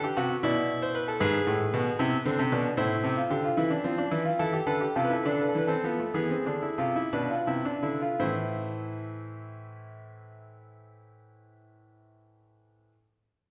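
A clear concert grand piano plays alone throughout this short passage cut from a longer baroque-style fugue in three voices, set in A minor and tuned slightly low with A4 at 435 Hz. The mood is driving yet contemplative, moving in a straight 12/8 metre at roughly 53 to 78 beats per minute counted in dotted quarters. The piano sits up front with a polished, present tone, a deep bass and a short sustain, spanning G#2 to D5. Between 2.2 and 8.2 seconds the tempo slows, while the harmony moves from E through rootless E7 and A minor shapes to E7sus4 and E7. At 8.2 seconds it arrives back on A minor, opening a new section that runs to 12.7 seconds, with the piano sounding until 12.9 seconds. A wet recital-hall reverb of about 1.4 seconds surrounds the instrument with the air of a church or concert hall.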